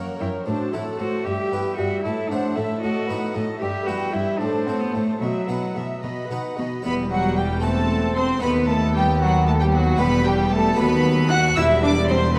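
A stormy, driving baroque-style concerto movement in 6/8 opens with period-style, gut-string violin sections, one carrying the high melody and a richer one the second line, over a viola section and a brilliant, dry, close-miked harpsichord with octave strings. A reedy solo cello joins with its own melodic line at 0.2 seconds, alongside a nasal cello section on the bass, and a double bass section enters at 6.8 seconds to deepen the low end. The dark production sits in a wet concert-hall reverb, and the passage is cut from a longer piece.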